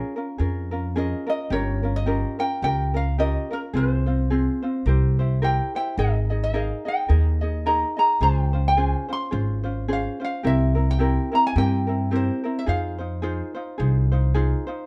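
A light reverb gives this sunny, relaxed Hawaiian excerpt an airy sense of space, moving at 108 BPM in 4/4 with a swung eighth-note feel in F minor. A fingerpicked ukulele carries the melody with a delicate touch and a plate reverb sheen, while a second, mellow fingerpicked ukulele sits up front with the accompaniment. A woody pizzicato upright bass joins at 0.4 s, also up front, as the harmony moves from Bbm7 through Dbmaj7 and C7 before settling on Fm7.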